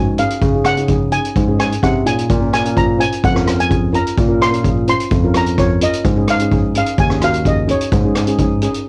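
A straight 4/4 calypso groove drives this bouncy, festive excerpt, where an up-front street-band drum kit with a boomy kick, hi-hat and rim click, its top rolled off and run through cassette tape, sits under a barky, lightly overdriven tine electric piano bass played through a combo amp, while a close-miked, dry lead steel pan carries the mellow, shimmering melody and a double-seconds pan in a boxy small room adds soft accompaniment over chords moving from Dbsus2 to Bbmadd9 at 2.3 seconds and Absus4 at 6.1 seconds, the whole excerpt captured as a home cassette recording with little reverb.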